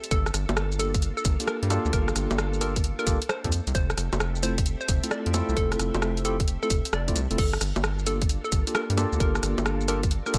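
A rubbery, bouncy square bass sits up front in this moody, soulful two-step UK garage excerpt, its resonant filter pluck giving each low note a fast attack and a mellow decay beneath a tight, layered electronic kick. At 132 BPM in 4/4 with a 66% swing on the 16ths, the garage kit brings bright hats forward alongside bongos, rim clicks, shaker and crash, all with a layered, produced edge. A hollow, warbling square-wave pluck carries the melody in a narrow upper register, its detuned, wave-folded tone softened by chorus and delay. From 0.8 seconds a clean tine electric piano adds stabs through a combo amp, colored by a medium tremolo and digital delay. In the background, a silky string machine holds slow-attack chords through phaser, ensemble chorus and vintage 12-bit grit, with sidechain pumping, while the harmony moves from Gm9 to Fmaj7 and back to Gm9 in G dorian, all set in a digital ambience.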